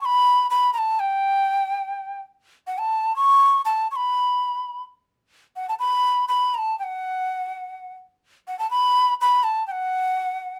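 Heard close and up front in a moderate studio ambience, a large quena plays alone through this short 10.6-second cut from a festive, earthy Andean folk piece. Its airy, woody tone carries vibrato and a chiff on tongued notes, staying between F#5 and C#6. The line moves in a straight 6/8 at 83 dotted-quarter beats per minute, with the same phrase heard twice, the repeat arriving at 5.3 seconds.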